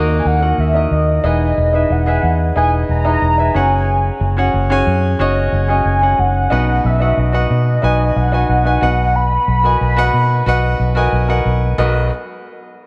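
A muted electric bass with a dark, round, punchy tone sits up front in this short piano-driven pop excerpt, playing from the first moment to about 12.1 seconds. Set at 91 BPM in 4/4 with a straight feel in B major, the music carries a hopeful, warm mood. A clear, polished baby grand piano supplies the accompaniment alongside it, moving through D#m, Emaj7 and F#sus2 before settling on B and Bmaj7. At 0.2 seconds a velvety synth lead enters with the melody, its detuned sawtooth and wave-folded tone colored by chorus, vibrato and tape echo, and it holds its notes until about 11.1 seconds. A plate reverb with a long tail gives the mix a dreamy, soaked atmosphere.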